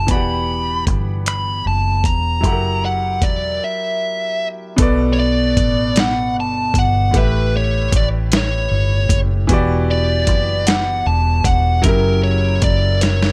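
Yearning and late-night, this slow six-eight R&B excerpt sets a dark, fuzz-distorted lead guitar melody over bright baby grand piano with audible action noise, a round, foam-muted fingered electric bass and a gritty, overdriven sampler-style soul drum kit with finger snaps and a thumpy kick, pausing for a break at 3.6 seconds before moving through Em9 and F#7b9 chords to a closing drum fill at 13.0 seconds, all in a dry mix with the guitar and drums up front.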